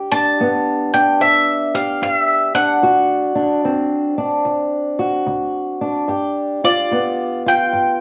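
A loping swing at 74 BPM in 4/4 carries this soulful, swaggering stretch of acoustic country blues, cut from a longer piece and moving from G to D7 at 2.8 seconds and on to G7 at 6.1 seconds. An old ladder-braced acoustic guitar, fingerpicked and dark, woody and boxy with aged strings, holds down the accompaniment from 0.0 seconds, while a warm bowl-back mandolin with paired, picked strings and a cassette-tape tint carries the high melody just after. Both sit up front in a small room with light reverb, with the homespun feel of a cassette recording.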